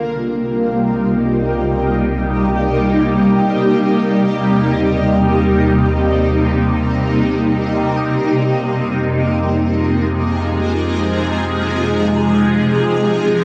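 In free time, this spacious, serene ambient piece drifts through Cm7, Eb6 and Fm7 on a shimmering, ethereal pad that sits bright and up front, its detuned, slow-attack chords carrying an octave-up shimmer with chorus, phaser, built-in reverb and cassette-tape coloring. Beneath it, a round, deep analog bass holds sustained low notes in the background, dark and evolving. The home cassette recording sits in a wet studio reverb, and the passage is cut from a longer piece.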